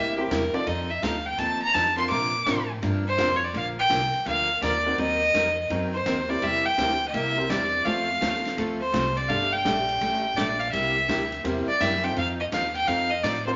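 The recording sits in a wet, large studio reverb with a softened top end, giving this short cut from a longer piece a roomy, mellow glow. It's a cheerful western swing number in Bb major at 167 BPM, swinging along in 4/4. Up front, a single clear, earthy fiddle carries the melody with light vibrato and an airy bow, taking a solo from the opening through 3.5 seconds before the tune moves into its next section. A bright, freshly strung steel-string acoustic guitar is picked in support, while a woody, boxy upright piano joins at 0.2 seconds from further back. Underneath, a thumpy gut-string upright bass is plucked, and a natural-sounding big-band drum kit enters at 0.3 seconds in the background, keeping time on hi-hat, ride cymbal and a medium-tuned snare. The harmony moves through chords such as C7, F7, Ebm6 and Gsus2.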